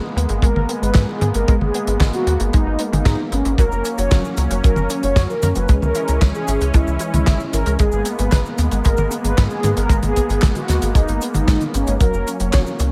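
A dry, tight acoustic kick sits up front in this melodramatic, danceable italo disco excerpt at 114 BPM in G# minor, alongside a punchy, wave-folded sequencer bass with tube saturation, a damped 70s kit of fat snare, toms, hi-hat, handclaps and cabasa under gated reverb, a round, vibrato-tinged synth brass melody with chorus and tape echo from 0.4 s, a smooth, chorused analog pad holding sustained chords, and lush, detuned pluck arpeggios with tape echo in the background, set in a small room ambience.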